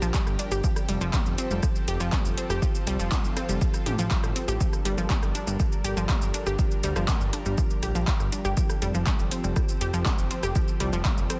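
A punchy, overdriven electronic kick sits up front in this dramatic, hypnotic melodic techno excerpt at 121 BPM, joined by a layered deep house kit of handclaps, metallic hi-hats, rim click, shaker and toms, a fat, detuned sawtooth bass with a filter sweep, a round, bright analog pluck arpeggio with chorus and tape echo, and a lush, full-bodied unison pad sustaining Gm7 and Fadd9 chords in the background, with the bass, pluck and pad all pumping to the sidechain under light digital ambience and a dense, heavily limited master.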